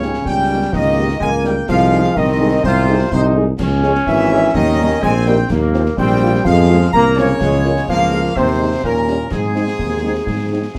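Rousing and proud, this is a short cut from a longer military-style march for wind band in Ab major, moving at 126 BPM in a straight 2/4. A distant, roomy trumpet section carries the melody, while an airy flute group with crisp attack, a very quiet, vintage-toned woodwind section and a close-miked euphonium with light vibrato weave second lines alongside it. Dark French horns sit in the background with accompaniment, a dark trombone section holds sustained chords, and a solo tuba with a smooth top sits up front as the bass. Concert snare, concert bass drum and clash cymbals with dark-sounding cymbals stay in the background as the whole band plays together from start to finish at 10.8 seconds. Moderate reverb gives a dark, warm production, and the harmony moves through chords such as Dbm, Fm and Bbm7/Db before settling on Ab at 9.3 seconds.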